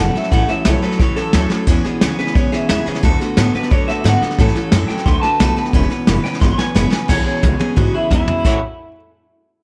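A driving straight 4/4 at 177 BPM in A major powers this rowdy, retro rockabilly fragment, where a twangy, slightly broken-up electric guitar sings the melody through lush chorus, plate reverb and tape echo over a second picked electric guitar riff, a bright picked steel-string acoustic with finger squeak, a thumpy gut-string upright bass, and an up-front vintage brush kit, dark and smooth, entering at 0.2 s with fills at 1.5 s and from 6.4 s.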